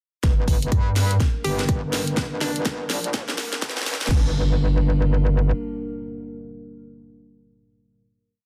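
A metallic, saturated wobble bass anchors this gritty, swaggering bass house piece, driven by a punchy four-on-the-floor kick and cracking garage snare and hats through a build with a filter sweep and drum fill, while a hollow, bouncy square pluck appears from 1.4 to 3.1 seconds, a very quiet riser and impact enter at 2.4 seconds, and a moody analog pad sustains in the background into a final G minor chord.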